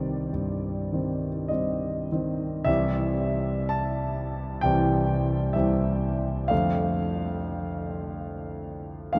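Mournful and wistful, this short passage, cut from a longer piece, is a romantic classical nocturne for solo piano, moving in 4/4 with a free, rubato feel at roughly 49 to 72 BPM in C major, tuned to A4 = 439 Hz. A concert grand carries everything alone from 0.0 to 9.2 seconds, ranging from C2 up to A5, with a deep bass and a smooth, vintage character. The instrument sits up front and intimate, and the noise of its action can be heard beneath the notes. The harmony opens on C minor, brightens to C major at 2.7 seconds as a new section begins, and moves to D minor over F at 6.5 seconds. A huge, wet reverb with an 8.9-second decay places the piano in a vast, echoing space, letting each chord hang and blur into the next.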